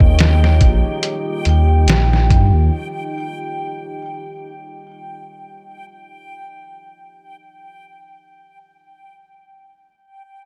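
Dark and cinematic, this trip hop fragment pairs a muffled, compressed, pitched-down sampler-style drum kit, with a thumpy kick and medium-tuned snare, with a deep, rumbling detuned saw bass, both up front. A moody ambient pad with chorus and reverb holds sustained chords beneath a metallic, ringing vibraphone melody struck with hard mallets and fed through tape echo. The drums stop at 2.5 seconds and the other parts at 2.7, leaving a faint, reversed granular texture, dreamy and bright in its own reverb, to hang alone until 9.5 seconds.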